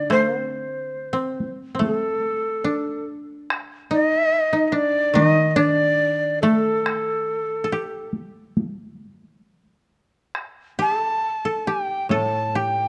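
In this short excerpt of Japanese traditional chamber music, a breathy, reedy shakuhachi carries the melody from the first moment, its end-blown bamboo tone straight and soft-edged with rolled-off highs, sitting up front in the mix. Beneath it, two kotos played with fingerpicks share the texture: one traces a second line in the middle register while the other supplies a low accompaniment, both sounding mellow and woody. Taiko drums struck with heavy sticks join at 0.1 seconds and continue until 12.3 seconds, their small-room sound giving weight to the spare arrangement. The music moves in a free, rubato 4/4 around 71 BPM and rests in D on a sen-style scale, creating a calm, austere mood. Close, detailed microphones and a light reverb keep the playing intimate and clear through the piece's 12.9 seconds.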